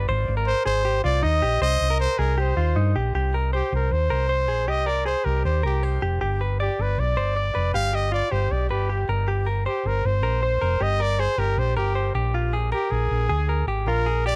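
A bright, close-miked trumpet carries the melody from 0.5 seconds, played in a pop style with a light vibrato and touched by tape echo in this wistful, bittersweet fragment of jangly indie pop in C minor. Beneath it, a clean electric guitar recorded direct picks twangy, compressed arpeggios with a scooped tone, its line also washed in tape echo. A hollow-body short-scale electric bass, played with the fingers, sits up front with a dark, round and punchy amped sound, the strongest presence in the mix. The tune moves at 157 BPM in a straight 4/4, opening on Abmaj7 and Cm7 before shifting at 3.1 seconds into a longer passage that travels through C5, G, a rootless Fsus4 and Bb. The whole has the dry, intimate feel of a close 1970s-style studio recording in a small room.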